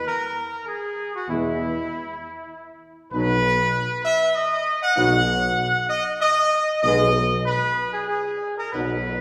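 A roomy, reverberant hall sound frames this brief, regal and solemn classical fanfare in 3/4, where a mellow trumpet section with light vibrato carries the melody up front from the opening while a dark, soft-attacked French horn section and a tight trombone section enter at 1.3 seconds with sustained chords in the background over a close-miked tuba bass, the harmony moving from E5 to B and settling on G#m/B at 6.8 seconds.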